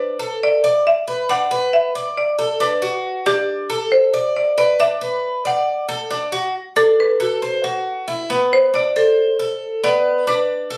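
A straight 4/4 Latin groove drives this sunny fragment of a longer piece, with a bright, woody marimba on rosewood bars, struck with medium hard mallets, carrying the melody up front while an acoustic Cuban tres, also up front, picks metallic double-string arpeggios with some octave-doubled strings, before the marimba takes a percussive solo from 6.5 seconds, all captured by a phone in the room and finished with light studio reverb and compression.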